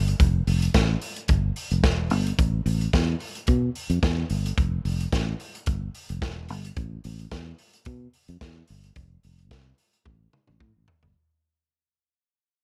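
Disco with a danceable, glamorous mood, this short section cut from a longer piece pairs a fingered electric bass with a vintage drum kit in straight 4/4 time. The bass sounds at 0.0 seconds and the drums join at 0.1 seconds, both sitting up front in a dry mix. The bass is dark and round, with a foam-muted, direct-and-amped character. The acoustic kit, heard in a studio room, is mid-forward with a tight kick, a medium-tuned snare, hi-hat and toms, and a rolled-off top end. A fade-out runs across the whole passage, and a drum fill closes it from 10.1 seconds.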